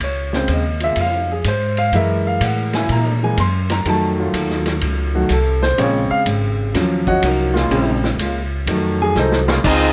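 A swinging 4/4 pulse at 125 BPM drives this sultry, dramatic big band excerpt in Bb minor, where a clear, up-front grand piano solos over a woody, growly pizzicato upright bass and a gritty vintage kit with dark cymbals, while a close-miked trombone section holds vibrato-laden sustained chords from 0.8 seconds, a drum fill arrives at 9.2 seconds, and a smooth-topped trumpet melody with a tight, clear trombone second line enters at 9.6 seconds, all set in a moderate club reverb.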